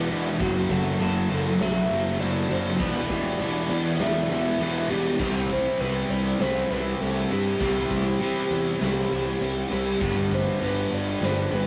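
Brooding and melancholic, this 100 BPM shoegaze and dream pop rock excerpt sets a round, dark, chorused octave-layered synth lead over growly overdriven fuzz bass, a thick fuzz guitar riff, background riffs from a double-tracked cranked stack guitar and a scooped, twangy clean electric guitar, very quiet shimmering arpeggios from a boxy picked twelve-string acoustic, and a huge arena drum kit with bright cymbals and a punchy kick entering at 0.1 s, heard in a rough rehearsal-room recording with moderate stone-room reverb as the chords move from F#m7b5 and Em7 to Cmaj7 at 5.2 s and Gmaj7.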